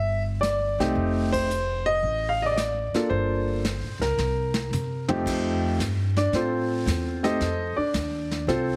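A jazz piano trio swings through this short, sophisticated excerpt cut from a longer piece, with a relaxed, lilting triplet feel in four. A concert grand carries the melody up front, its tone deep in the bass and natural, set in a plate reverb, while a pizzicato upright bass with a woody, steel-strung sound anchors the low end from the first moment. A vintage brush kit joins at 0.4 seconds, its dark cymbals, medium-tuned snare and tight kick rounded off by a rolled-off top and a small-room character. The band hits an accent at 1.2 seconds, and a drum fill from 4.2 seconds leads into a piano solo that begins at 5.3 seconds as the harmony returns to F7. The whole trio sits in a moderate studio room and is squeezed by heavy compression into a vintage, radio-like sound.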